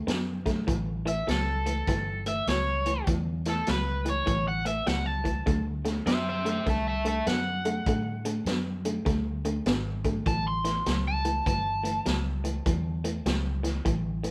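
A twangy, slightly broken-up electric guitar riff through a small old amp opens this swaggering, laid-back electric blues shuffle, its low line bathed in spring reverb. Within a fraction of a second a round, dark, foam-muted fingered bass and a vintage drum kit join, the kit offering a punchy kick, a medium-tuned snare and hi-hat with a rolled-off top that sits up front. At 1.1 seconds a bright, overdriven lead guitar enters with a crunchy picked melody spanning A4 to C6, sitting slightly above the rest of the band until it drops out at 13.2 seconds. The groove swings at 100 BPM in A mixolydian, with the harmony moving from D to A, back to D and finally to A7. A light reverb gives the sense of a band playing live together in one room, and the passage is cut from a longer piece.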